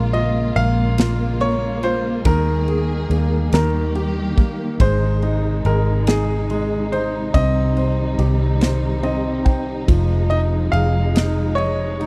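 A dry, close recording with a 1970s studio character and a small room's reverb frames this heartfelt, romantic pop ballad in Ab major, moving slowly at 47 BPM in a straight 6/8. A bright, brilliant concert grand carries the melody over a clear baby grand accompaniment, while a distant, lush string section holds bowed chords with expressive vibrato, drifting from Bbm7 through Ebsus4 and Ab toward Fm7. Up front, a dark, round, foam-muted electric bass and an airy country drum kit with a punchy kick, ride and medium-tuned snare anchor the groove, and the grand piano adds a fill from 8.6 to 9.9 seconds in this cut from a longer piece.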